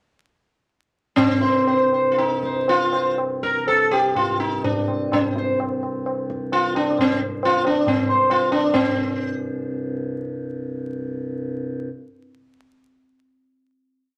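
At 1.2 s a sitar, pedal harmonium and tabla begin together in this short, complete piece of Hindustani classical music in raga Bhimpalasi, solemn and meditative in mood and gradually speeding up throughout. The plectrum-plucked sitar sits up front with a buzzing, shimmering, round tone and ringing sympathetic strings, playing a composed theme and improvisation within the rhythmic cycle. Beneath it, the pedal harmonium holds a low, reedy, breathing drone that sounds mellow, full, close-miked and dry. The high-tuned tabla, close and dry with a short ring, keeps an eight-beat cycle at two strokes a beat until it drops out at 8.9 s, as the theme gives way to a final chord. The sitar stops at 10.3 s, leaving the harmonium to sustain to the end, all heard in a wet club reverb with a layer of vinyl crackle.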